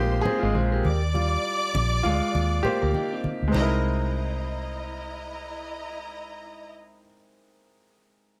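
A clear, polished baby grand piano stands up front with a solo over the first 3.5 seconds of this smooth, bittersweet, lush 1970s-style soul passage cut from a longer piece, joined by a dark, round, foam-muted electric bass, a slightly broken-up, lo-fi picked electric guitar riff, soft-handed, low-tuned congas in the background and a distant, bowed string section with vibrato, set in light reverb and studio ambience as the chords move from Bb9sus4 to Ebmaj9 and on to C7alt.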